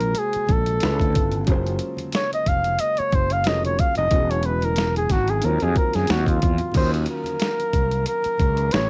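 A breathy flugelhorn with jazz-style vibrato takes a solo through the first 6.7 seconds of this sultry, smooth neo-soul R&B excerpt, set at 91 BPM in Eb dorian with a gentle sixteenth-note swing and a cassette-tape grit on the horn, piano and drums. Up front beside it sit a growly, bright fretless electric bass with transformer saturation and a compressed, pitched-down boom bap sampler-style kit with a thumpy kick, high-tuned snare, hi-hat and crash. Further back, a woody upright piano with audible action noise and a very quiet flute-like tonewheel organ with key click and slow rotary speaker fill out lush chords such as Gbmaj9#11 and Ebm9, while low-tuned, saturated congas enter at 0.5 seconds, all in a dry home-recorded room.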